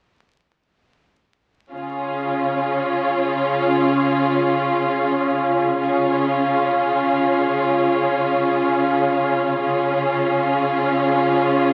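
Classical slow romantic movement for string orchestra in D-flat major, lyrical and tender, unfolding in free time as the full ensemble enters together at 1.7 s on a D-flat chord and sustains through 11.7 s of this fragment from a longer piece. A distant violin section carries the melody from the background, while a second violin line with a smooth top and a lush viola accompaniment sit up front, all over a focused, vibrato-laden cello bass. A wet concert-hall reverb surrounds the bowed strings, and the sound of a very old 78 rpm record adds vinyl crackle throughout.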